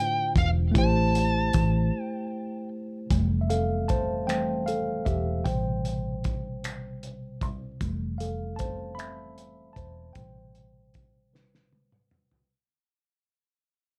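Slow six-eight R&B in A minor at 51 BPM, sultry and yearning, this cut from a longer piece opens with a dark, overdriven lead guitar carrying a short picked melody through tape echo until 2.7 seconds, over a worn, slightly out-of-tune tine electric piano and a round, foam-muted vintage fingered bass. A cloth-damped drum kit joins at 0.4 seconds with finger snaps, hi-hat, a tight kick, a fat snare and toms, its muffled, gritty, lo-fi small-room sound sitting up front. After a break, the mellow electric piano takes a solo from 3.1 seconds over Fmaj7 and Am7 as the music fades out, with a drum fill near the close and light reverb throughout.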